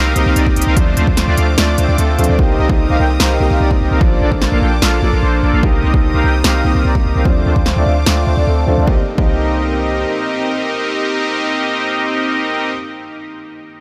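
A half-time groove in 4/4 drives this bittersweet, dreamy future bass fragment, cut from a longer piece, built on a punchy electronic kick and a big-room dance kit of crisp hi-hats and snare, both carrying a small-room character. Up front, a soft, detuned supersaw plays the riff through a phaser, low-pass filter, dub echo and 12-bit sampler grit, while a deep, boomy 808-style bass sits beneath; both sweep through a filter until 8.9 seconds. A felt-muted upright piano adds intimate, dark accompaniment with audible action noise and dub echo, and a lush, bowed string section holds sustained chords in the background. The supersaw, bass, piano and strings pump with sidechain compression over chords moving among Cm7, Dm7 and Bbmaj7, and light reverb surrounds the mix. The drums drop away by 9.3 seconds, leaving the melodic parts to close the passage.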